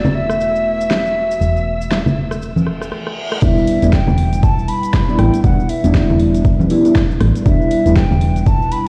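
Heard through a stone-room echo with a cassette grain, as if played on a big sound system in a bare room, this late-night, hypnotic deep house excerpt in E minor moves at 119 BPM with a swung 16th feel. A breathy, hollow jazz flute carries the melody through tape echo over a warbling lo-fi pad, a woody FM bass, soft-handed congas and a layered drum kit with a fat snare, while a lush symphonic violin section hovers in the background until 2.9 seconds and filter-swept drums build through a stop, a fill and a reverse cymbal. At 3.4 seconds the drop lands on Em7 with a punchy electronic kick, an electronic impact and a deep, detuned chord stab colored by chorus, phaser and analog delay, with sidechain pumping on the bass, pad, congas and stab.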